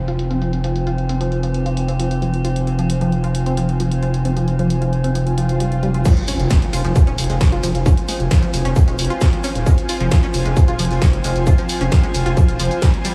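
An impact opens this dark, driving peak-time techno excerpt over a gritty, saturated synth bass, an eerie metallic drone and an airy, breathy pad, each pumping to the sidechain, as a tight, detuned sequenced synth riff with phaser and analog delay and a punchy analog drum machine of hi-hats, shaker, snare and crash push ahead, until a swell at 5.4 seconds leads into the drop at 6.1 seconds, where a distorted, up-front electronic kick and a very quiet vintage brush kit join within a small, lightly reverberant room.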